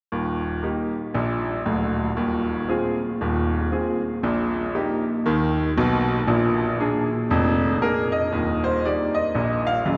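A bright grand piano rings out up front in a vast, echoing space, its notes carrying a long sustain into a cathedral-like wash of reverb. This is a short cut of exuberant, playful stride jazz at 117 BPM in 4/4, swung on the eighths and set in Eb major. The lone piano plays throughout, from 0.1 to 10.0 seconds, reaching from deep D1 in the bass up to F5, with a brilliant, smooth and vintage character. The harmony moves from Eb through Fm7 over Eb, then Eb over Bb and a Bb7 before settling back on Eb. At 8.3 seconds the music turns to a new section as that final Eb chord arrives, and the fragment ends at 10.0 seconds.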